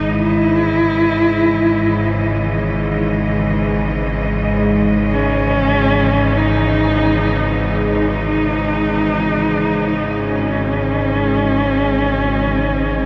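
An analog drone, a bowed symphonic cello section and a horsehead fiddle sound together from the first moment of this cavernous, unsettling dark ambient drone, cut from a longer piece. The sawtooth and pulse-wave drone, thickened by chorus and slowly evolving under a filter sweep, sits beneath lush, smooth cello chords with vibrato. The husky fiddle carries an expressive melody with portamento, both string parts bathed in shimmer reverb and the fiddle also in tape echo, while a huge, wet reverb with an 8.2-second decay sets the strings at a distance.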